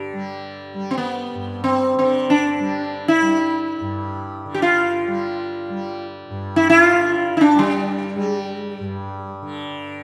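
A softly plucked, buzzing tanpura drone on G opens this passage of Hindustani classical music, and at 0.9 seconds a round, up-front sitar enters, its plectrum-plucked melody ringing with shimmering sympathetic strings until 9.3 seconds. The music unfolds in free time in raga khamaj on G, tuned to A4 = 436 Hz, with a devotional, meditative mood. A moderate concert hall reverb lends the performance a gentle sense of space, while the tanpura sits well beneath the sitar.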